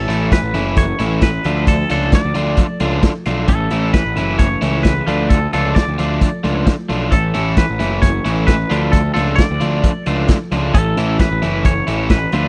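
Jangly and carefree, this indie rock passage moves at a straight 132 BPM in 4/4, cycling between A major and D minor chords in A major. A bright, twangy electric guitar carries the melody between A4 and D5, its clean picked tone colored by tremolo and tape echo. Beneath it, a clean twelve-string electric guitar plays a riff from the background through analog chorus, while an overdriven electric guitar enters at 0.1 seconds with a second, compressed riff. A fuzz-soaked picked bass sits up front, its overdriven, amped tone anchoring the low end from F#1 to D2. The raw garage drum kit, punchy in the kick with a medium-tuned snare and a rolled-off top, sits prominently in a dry, close 1970s-style studio sound that captures a short cut from a longer piece.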